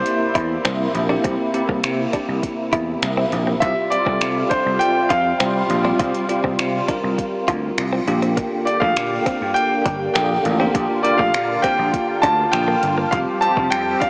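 Soaked in a dreamy reverb with a small-speaker sound, this euphoric, upbeat dance-pop excerpt puts a clear, polished baby grand piano melody with tape echo up front over a bell-like tine electric piano and a mellow, detuned supersaw swell with phaser, both pumping to the sidechain, while a growly vintage slap bass, a soft-kicked R&B drum kit with finger snaps and metallic hats, and a background clean electric guitar riff with lush chorus join in the first half-second, moving through C7, Fsus2 and Bb6 chords.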